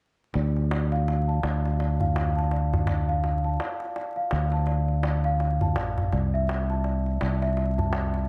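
Smoky and melancholic, this brief trip hop excerpt, cut from a longer piece, moves with a loose, swung sixteenth-note lilt in 4/4. A large celesta plays delicate, bell-like arpeggios, its dark, ringing tone softened by a low-pass filter that sweeps across its whole span and trailed by delay. Underneath, a fingered electric bass sits punchy and up front, its direct, amped sound anchoring the low end. A darbuka with a clay shell and natural skin sounds deep and distant, as if heard across a large room. The harmony rests on D minor before shifting to C at 6.1 seconds, and a light reverb and a layer of vinyl crackle lend the recording a dusty, late-night haze.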